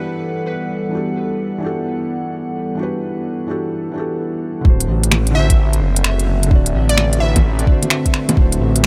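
A swung 4/4 groove at 129 BPM drives this nocturnal, ghostly future garage fragment, cut from a longer piece, though the beat only arrives at 4.7 seconds, when a soft, tape-warm electronic kick and an organic electronic kit of bongos, finger snaps and crisp hi-hat step up front, their hats, snare and percussion dulled by low-pass filtering. Before that, a felt-muted upright piano, mellow and intimate with audible action noise, and a warbling, nostalgic, lo-fi pad built from square and triangle waves hold an Em11 chord, both breathing with sidechain pumping, while a calm glass-harmonics texture drifts faintly in the background. At 4.7 seconds the harmony moves to D7 and a menacing, saturated detuned sawtooth bass swells in from deep below with an evolving filter swell, pumping in time beneath the drums. A crystalline wavetable pluck, bright and digital with a sub octave, flickers briefly at the start and then carries the melody from 5.3 seconds, its decaying notes trailed by chorus and tape echo. 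Light reverb and a digital ambience frame the mix, giving the dark pad and soft piano an intimate, hazy space.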